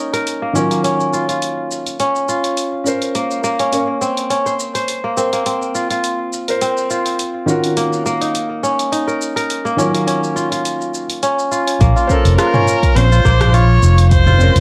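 Meditative and earthy, this organic downtempo fragment in Bb minor moves at 104 BPM with a light 16th-note swing, opening at 0.0 seconds on a bright, ringing fingerpicked kora, filtered and touched with digital delay. It is soon joined by a tape-tinged deep house kit of hi-hat, rim click, shaker and toms, and then by a soft, muted felt upright piano that pumps gently under sidechain and echoes through delay, all over Ebm9 and Bbmadd9 chords in a moderate room reverb. At 11.8 seconds a growly, punchy fretless electric bass with tube saturation and a deep electronic kick arrive, and at 12.1 seconds a rich bowed kamancheh sings an expressive line full of vibrato and portamento.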